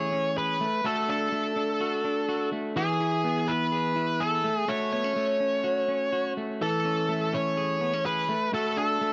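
Indie pop in A major at 125 BPM, this brief 9.1-second excerpt has a bright, breezy mood in a straight 4/4 feel, tuned slightly below standard pitch. A smooth, overdriven lead guitar carries the melody in a narrow high range between G#4 and C#5, its picked tone sitting up front and colored by tape echo. Beneath it, a second electric guitar at the edge of break-up plays fingered arpeggios from E3 to G#4, twangy and slightly gritty, also colored by tape echo. Both guitars run the full length, moving through Amaj7, D, E and F#m before returning to Amaj7 and D. The sound is dry and close, in the manner of a 1970s studio recording, touched only by light reverb.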